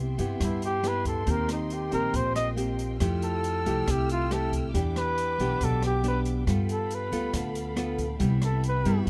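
A smooth-topped flugelhorn sits up front with a jazz-style solo from 0.4 seconds, its scooped notes shaded with vibrato, in this sunny, sophisticated bossa nova at 138 BPM in C major. Fingerpicked nylon-string guitar with a classical touch shares the foreground, and a woody pizzicato upright bass anchors the low end. A dark, small-room jazz kit of hi-hat, rim click and boomy kick joins at 0.2 seconds, while a lush bowed string section holds sustained chords in the background through a dry mix that moves from Cmaj7 through Eb6, Fmaj9, Em7 and G9 back to Cmaj7, in a short cut from a longer piece.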